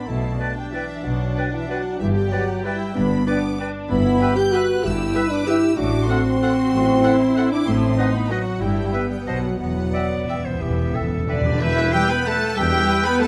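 Elegant and sweeping, this orchestral ballroom waltz in 3/4 moves with a rubato lilt at 169-204 BPM, starting in G major and turning to E minor from 3.9 s, with an expressive, vibrato-rich violin section carrying the melody over a second violin line, smooth violas, distant cellos and focused double basses, while a dark, up-front French horn section holds sustained chords. Airy flutes, a clear oboe and a bright clarinet add second lines, and hard-mallet timpani, close and dry, mark the opening and play a fill from 9.6 s. At 11.6 s a roomy tuba joins the bass, and from 11.9 s a distant trumpet adds stabs, all set in a moderate scoring-stage reverb in this fragment cut from a longer piece.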